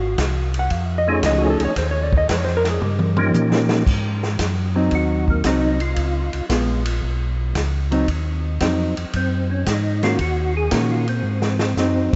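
A percussive tonewheel organ with third-harmonic percussion, chorus vibrato and a slow rotary speaker takes the solo at 3.9 seconds in this greasy, soulful soul jazz organ trio excerpt at 114 BPM in Ab mixolydian, following a clean, dark hollow-body jazz guitar that solos over a swung 4/4 groove, while a round, mellow tonewheel organ with key click holds down the bass up front and a vintage acoustic drum kit with dusky cymbals and a punchy kick adds fills, the whole mix soaked in a huge, dreamy reverb.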